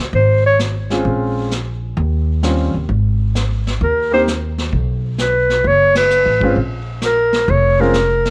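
A breathy, up-front clarinet with vibrato and scooped notes leads this cool, swinging small-group jazz excerpt at 131 BPM in B-flat minor, sounding a brief phrase at 0.2 s before returning at 3.8 s, over an open grand piano with deep bass, a woody pizzicato upright bass, and a distant, roomy brush kit with dark cymbals, all in light studio reverb, with a band accent at 5.9 s.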